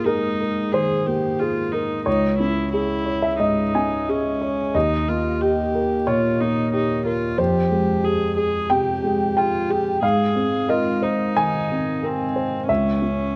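The rhythm moves with a rubato feel in 4/4, around 91 BPM, giving this intimate, hopeful neoclassical piece for piano and strings an unhurried, breathing pulse. A dark, mellow baby grand piano accompanies from the start, its vintage character marked by audible action noise and a smooth tone sitting up front across a range from Db2 to Ab5. A single bowed viola joins it from 0.0 seconds, played sul tasto with a soft attack and a pure, floating quality, also placed up front in a narrow range from C4 to Ab4. In Ab major, the harmony moves from Abadd9 through Dbmadd9, Eb and Fmadd9 before returning to Abadd9 and settling on Db minor at 12.7 seconds. Close, detailed microphones and light reverb keep the sound near and personal throughout this 13.4-second cut from a longer piece.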